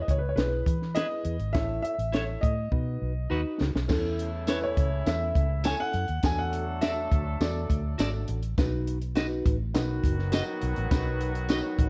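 A boxy, intimate grand piano with slapback echo carries the melody over a reedy, phased electric piano in this joyful, uplifting 1960s-style soul excerpt, as a round, foam-muted electric bass and a dark, compact cocktail drum kit with a high-tuned snare and punchy kick sit up front, clean picked electric guitar stabs join at 1.0 seconds, and after a drum fill the tight, vintage horn section, with light vibrato, octave doubling and slapback echo, arrives at 3.9 seconds alongside a jingly, close tambourine, all in a dry, small-room sound.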